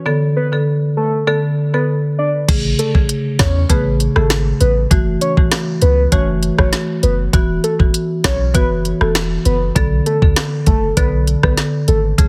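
Dancehall at 99 BPM in a straight 4/4, bouncy and hypnotic, this short cut from a longer piece opens on a woody marimba played with medium mallets, its padauk bars sounding boxy and up front. A soft, octave-layered synth lead carries the melody from 0.4 seconds, round and dark with a triangle tone over a sub octave, given shimmer by chorus, phaser and vibrato. At 2.5 seconds a deep, boomy 808-style bass arrives with a fast attack and mellow decay, alongside an electronic afro-pop kit with a knocking kick, woody snare, smooth hi-hats, rim clicks and crash cymbal, sitting tape-warm at the front of the mix. The harmony moves through Bm7, Amaj7, F#m7 and Esus2 before returning to Bm7. The sound is dry, with little reverb, and heavily compressed for a dense, radio-ready punch.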